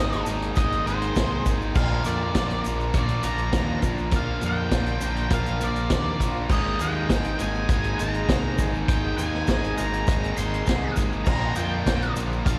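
Heard as a live gig through the venue's PA, this 12.6-second cut from a longer classic rock piece carries small-room ambience and recital-hall reverb, with a sunny, driving mood at 101 BPM in a straight 4/4, moving between Abadd9, Bb and Absus2 in Bb mixolydian. A dark, fuzzed-out octave lead guitar carries the melody through distortion, slapback echo and analog delay. Beneath it, three overdriven riff guitars (a very quiet double-tracked biting part, a crunchy bright one in the background, and a compressed one with spring reverb and slapback) join a growling, up-front picked bass and a punchy vintage drum kit with dark cymbals that comes in at 0.1 seconds, while a grainy egg shaker enters in the background at 0.3 seconds.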